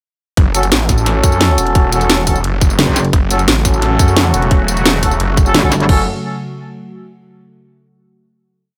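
Dark technical drum and bass at 174 BPM in F# minor, this short, mechanical piece opens straight into a drop at 0.4 seconds on an F# minor chord, driven by a tight, layered electronic kick and an up-front kit with a cracking snare, hi-hats, tambourine and crash in small room ambience, under a snarling, growling saw bass thick with distortion and overdrive in chopped phrases. A clear brass ensemble adds sparse, echoing chord stabs through digital delay, one shape moved in parallel, while a metallic FM wobble bass with chorus cuts in briefly at 2.8 and 5.5 seconds with modulated phrases. From 3.1 seconds an airy, evolving pad with a noise layer and chorus pumps beneath the mix before the piece settles onto a final chord at 5.9 seconds, all under light reverb.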